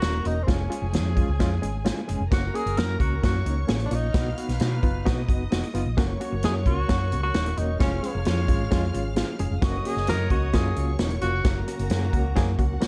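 Joyful and warm in spirit, this short cut from a longer piece is uptempo 1960s-style soul at 131 BPM in 4/4 with a straight feel, set in F# major and moving through the chords C#/E#, F#, B and back to F#. A mellow tenor saxophone carries the melody with subtone, vibrato and scooped notes, sitting distant and roomy in a jazz style and touched with slapback echo until about 11.6 seconds. Behind it, a rich, lush bowed string section plays a second line, as does a distant horn section in the background, also given slapback echo. An overdriven, gritty reed electric piano with fast tremolo, heard through a combo amp, supplies the accompaniment. A round, dark hollow-body short-scale bass played with the fingers and a punchy, natural country drum kit with hi-hat, kick and a medium-tuned snare sit up front, and a very quiet, lightly overdriven tonewheel organ with key click and slow rotary speaker joins on sustained chords at 6.0 seconds. 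The whole has a dark, warm production in a small room ambience.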